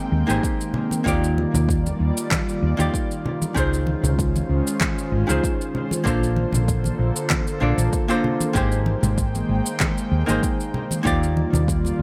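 A clean, picked archtop guitar with a touch of delay and an airy, breathy pad with chorus open this blissful, sunny sunset chillout excerpt, setting out a glowing Abmaj9 chord at a relaxed 96 BPM in straight 4/4. The woody fretless bass arrives almost at once, round and dark and sitting up front alongside the hollow-bodied guitar, while the pad's soft, detuned sawtooth layers, noise and ring modulation swell in slowly with a long, mellow release. At 0.3 seconds an overdriven electronic shaker and handclaps join with congas tucked into the background, and a deep, layered electronic kick drum follows at 0.4 seconds, its grit framed by small room ambience. The harmony drifts through lush major-ninth chords, moving from Ebmaj9 to Dbmaj9 and Bbmaj9 before returning to Abmaj9 and resting on Ebmaj9 as the clip closes. A light reverb gives the whole blend a gentle, sunlit glow.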